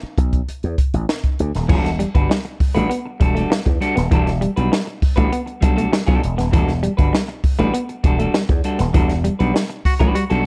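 A growly, punchy slap bass run through an envelope filter opens this short funk excerpt, starting alone at 0.0 seconds over an E7 chord with its third omitted, at a straight 99 BPM in E minor. A compact cocktail drum kit joins almost at once, its high-tuned snare, punchy kick, hi-hat, dark crash and dry acoustic sound sitting up front with the bass. At 1.7 seconds the harmony moves to Em11 as two clean guitars enter: a picked electric guitar plays accompaniment, and a dark, fingered semi-hollow guitar carries a low riff. A band accent arrives near the end, and a clear, smooth baritone saxophone with a soft attack briefly touches an F#4 as a second line at 9.9 seconds. Light studio reverb and a dark production give the groove a cool, hypnotic feel.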